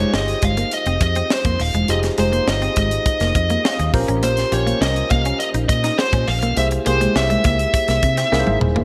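Bright 1980s-style digital production with light reverb and studio ambience frames this polished jazz-funk pop fragment at 102 BPM in Bb dorian, its bittersweet, nocturnal mood carried by a dark, distorted lead guitar singing a bluesy melody up front over Fm9, Bbm69 and C7 colours. A worn, slightly out-of-tune tine electric piano with analog chorus comps and adds a fill at 3.4 seconds, while a twangy, slightly broken-up rhythm guitar picks a compressed riff in the background. Underneath, a foam-muted, round and punchy fingered bass holds the low end beside a tight funk kit with a high-tuned snare, which plays a drum fill at 8.3 seconds.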